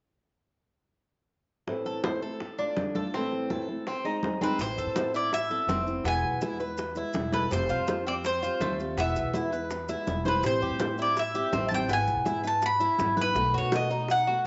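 Set in moderate echo-chamber reverb with a dulled, rolled-off top, this warm, nostalgic stretch of Cuban son and guajira at 164 BPM in A harmonic minor sets dark, fingerpicked flamenco guitar with audible finger squeak against ringing hard-hand congas, very quiet low-tuned bongos and a metallic, partly octave-doubled Cuban tres picking arpeggios through slapback echo, before a round, up-front picked mandolin takes the melody at 4.4 seconds, woody pizzicato upright bass and grainy background maracas join at 4.6 seconds, and a brief drum fill arrives at 9.9 seconds.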